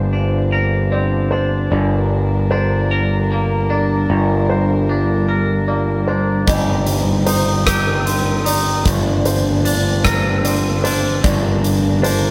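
A moderate stone-room reverb surrounds a band playing live in this melancholic, cathartic post-rock excerpt in G minor at 50 BPM in 6/8, where bowed chamber strings hold sul tasto chords with light vibrato, a felt-muted upright piano plays mellow arpeggios in the background, a twangy, scooped electric guitar with phaser picks arpeggios, an overdriven, growling picked bass sits up front on G1, and a huge arena drum kit with a punchy kick, hi-hat and rim click enters at 6.5 seconds as the harmony moves from Gm to Cm/G and back to Gm at 8.9 seconds.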